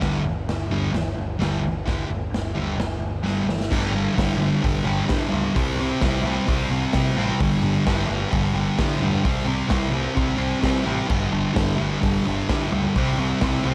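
A light reverb gives this rowdy fragment of garage rock a raw feel, with a thick, double-tracked fuzz guitar pushed up front. At a straight 130 BPM in 4/4, the swaggering riff alternates between G5 and C5 power chords. A growling, overdriven electric bass sits in the background, while an acoustic drum kit with a punchy kick, a medium-tuned snare and a rolled-off top rings out in a stone room, adding crash cymbal, hi-hat and toms. A drum fill from 3.3 to 3.7 seconds kicks the band into a longer second passage. That passage runs to the end at 13.7 seconds, still trading between the same two chords.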